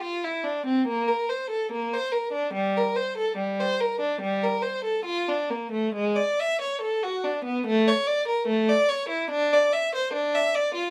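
Grave and introspective, this short passage is a baroque-style suite movement for unaccompanied violin, cut from a longer piece. A single bowed violin plays alone from 0.0 to 10.9 seconds at around 72 BPM in 4/4, though the rubato phrasing lets the pulse breathe freely. Its tone is rich and focused, shaded with vibrato, and it moves between G3 and E5. The violin sits up front, captured by close, detailed microphones with little reverb, so every bow stroke comes across with clarity. The whole fragment unfolds as one unbroken section, keeping the mood sober and inward-looking.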